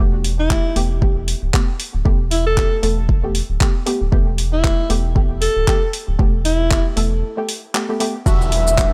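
Deep house at 116 BPM with a 16th-note swing, this smooth, moody excerpt opens on a Gadd9 chord as muted, chorused dub chord stabs with tape echo pump over a round, tube-saturated analog bass, joined at 0.2 s by an overdriven drum kit of handclaps, hi-hat and shaker and at 0.5 s by an up-front electronic kick, while a breathy, whispered alto saxophone with vibrato and tape echo plays an intimate jazz-style solo until 6.9 s, before a break gives way at 8.3 s to an Em9 chord carrying a velvety synth lead on E5, an airy pad in the background and a downlifter, all in a dry, gritty hardware sound.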